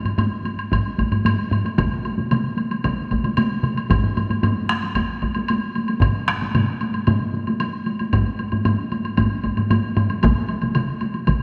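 Japanese traditional taiko ensemble music, driving and ceremonial in a straight 4/4, with a compressed, saturated solo taiko struck with heavy sticks until 10.1 seconds, layered taiko ensembles played with hard and heavy sticks (one up front in a small room, the others close and dry) entering by 1.8 seconds, and a woody, saturated woodblock sitting lower in the mix, all bathed in a lush concert hall reverb in this short cut from a longer piece.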